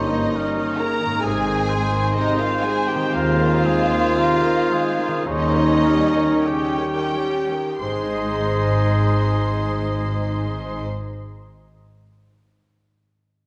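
This classical excerpt is a slow, lyrical romantic movement for symphony orchestra in Ab major, moving in 4/4 at 42-70 BPM with a rubato feel that slows through its first 7.8 seconds. A close, bowed violin section carries the melody with expressive vibrato and a soft attack, while a second violin section, a solo oboe and a background clarinet share a second line beneath it. Violas supply smooth accompaniment, a French horn section holds mellow sustained chords, and a distant, roomy trumpet adds clear stabs. Cellos and a soft-edged, distant double bass section anchor the bass. A fingerpicked concert harp rings out arpeggios in the background and is the last part sounding, carrying on to 11.7 seconds after the others stop at 10.9. The harmony settles from Eb7/G onto Ab, and the whole recording sits in a moderate concert hall reverb with the worn, warbling pitch drift of old cassette tape.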